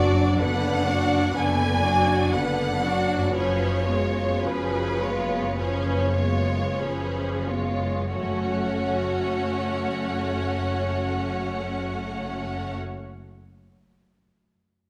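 Melancholic and solemn, this classical string passage in F# minor moves in a rubato 4/4 at 43-66 BPM, with a clear, focused violin section carrying the melody up close over a lush second violin line, violas sitting up front with an even accompaniment, a ringing thumb-plucked concert harp adding very quiet arpeggios, and rich, bowed cellos in the background alongside double basses on a low F# pedal, all with vibrato strings and a recital-hall reverb, as the music slows through Bm/F# and C#7/F# before settling on F#m at 8.1 seconds.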